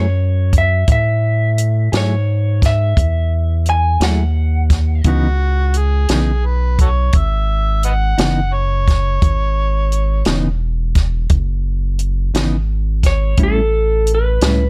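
A dry, close-sounding cut from a longer slow blues in C# minor, mournful and brooding, moving at 58 BPM in a straight 12/8 over F#m9, C#m9 and A7 chords. A slightly broken-up, lo-fi electric guitar through a small old amp carries the melody at the start and returns at 13.1 seconds, while a dark, clean electric guitar with tremolo comps underneath and a rubbery, hollow square bass sits up front. A compact cocktail kit with a high-tuned snare and punchy kick enters at 0.5 seconds, and between 5.1 and 10.6 seconds a gritty, overdriven harmonica with light vibrato and tongue slaps takes a soft-edged second line.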